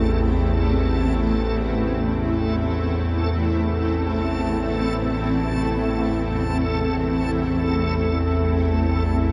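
In free time, this short, unsettling dark ambient drone in A minor rests on a tense, string-like bowed drone with vibrato, low in register yet up front in the mix, and a cloudy, evolving granular pad holding sustained chords up front, while a reversed, dreamy swelling texture glimmers brightly above and an eerie, inharmonic FM bell with chorus, barely audible, adds arpeggios from 4.1 seconds, all bathed in a huge, wet ambient reverb.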